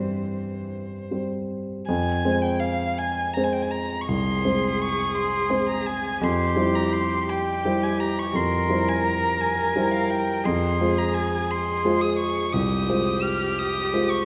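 Yearning and elegiac, this slow romantic piano trio movement, cut from a longer piece, moves with rubato at 56 BPM in 12/8 in F minor, as one close, up-front violin sings the melody with an airy sul tasto bow and light vibrato, a single intimate cello traces a soft-attacked second line beneath it, and a warm grand piano with short sustain supplies the accompaniment, all set in the moderate reverb of a scoring stage.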